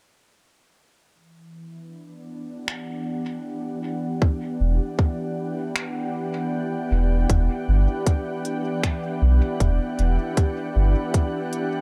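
A lightly swung 4/4 groove of finger snaps and crisp hi-hats, tape-toned and sent into dub echo, drives this hazy, spacious ambient dub fragment, where a pure, full-bodied organ-like pad holds sustained, chorused, reverberant chords, opening on Em7, under a filter sweep from 1.1 seconds, a tight electronic kick sits up front but drops out between 5.8 and 7.3 seconds, and a deep, round sub bass with tube saturation anchors the low end, all in a light reverb.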